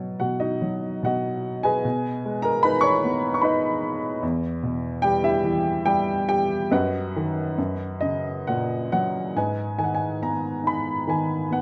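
A 3/4 pulse, taken with free rubato at around 65-77 BPM, carries this reflective, wistful passage of lyrical classical solo piano in B major, cut from a longer piece. A woody, vintage-toned upright piano plays alone throughout, up front and close, its smooth notes ringing with long sustain across a range from E2 to C#6, touched by light reverb. The harmony moves from B through G#m/B to a poignant E minor before settling on F#, and a new passage opens on G#m at 9.3 seconds.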